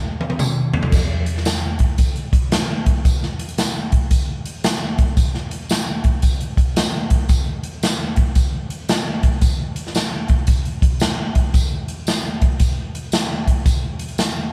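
Joyful and uplifting, this soul excerpt swings with an airy, polished big-band drum kit up front, its punchy kick, medium-tuned snare, hi-hat, crash and toms opening with a fill as a jingly tambourine joins at 0.4 seconds from the background of a large room, the band playing live together under light reverb.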